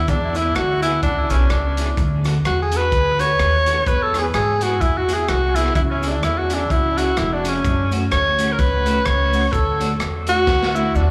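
Bouncy, upbeat ska excerpt at 127 BPM in E mixolydian, with a smooth, vibrato-laden tenor saxophone soloing up front through slapback and tape echo over woody pizzicato upright bass, a gritty, saturated breakbeat drum kit with tape echo that closes on a fill at 10.5 seconds, clean hollow-body electric guitar with subtle chorus tucked in the background, and a grainy, very quiet cabasa, all heard as a live gig through the venue's PA with club reverb.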